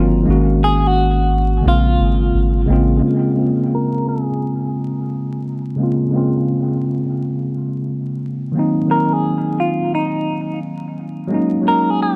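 Soaked in echo, lightly reverberant and dusted with vinyl crackle, this melancholic, reflective lo-fi hip hop excerpt in Bb minor moves at 87 BPM with a swung feel. A worn, slightly out-of-tune tine electric piano with dub echo carries the chords from the start, and a deep, round dub sub bass sits beneath it until 3.0 s. A picked, clean electric guitar with tremolo, low-pass filtering and dub echo enters at 0.6 s to play the melody, and a filter sweep runs from 3.0 s onward.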